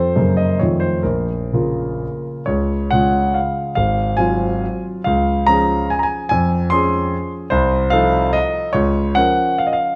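Dotted rhythms lilt through a rubato triple-time dance in 3/4, drifting between 117 and 156 BPM, in this wistful, capricious romantic classical fragment in Db major. A solo concert grand piano carries it all, warm and up front with a deep bass reaching down to Ab1. The piano moves through harmonies such as Gb, F7 and Bbm before a new passage settles on Db at 2.5 seconds, all set in a moderate recital hall reverb and captured by close, detailed microphones.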